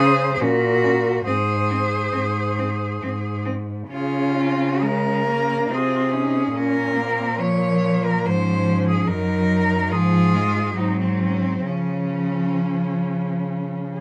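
In a lilting triple metre with uneven beats and rubato, this serene passage from a longer classical piece for cello ensemble moves with an unhurried, breathing pulse. Four bowed cellos, each a single player with vibrato, share the texture. The melody sits in the background on a warm, expressive cello with portamento. Up front, a second cello traces a higher line that stops at 13.5 seconds. A further cello plays the accompaniment with a smooth top, and it shares a rich, focused tone with the second line. Beneath them, a clear, even bass cello sounds up front yet somewhat distant, in a moderate studio reverb.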